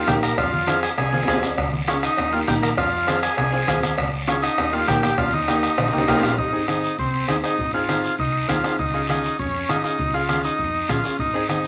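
A brisk, straight 4/4 cumbia pulse at 200 BPM in Ab major carries this festive, joyful latin excerpt, where a buzzy, overdriven combo organ with light vibrato sings the melody up front over a bright, slightly detuned upright piano, a round, punchy fingered electric bass, a distant soft-beater bombo, low-tuned ringing congas, a raspy close guiro, and metal-shell timbales and cowbell that drop out at 6.3 s as the harmony moves from Fm, Db and Eb to Ab, all under a wet studio reverb and a layer of vinyl crackle.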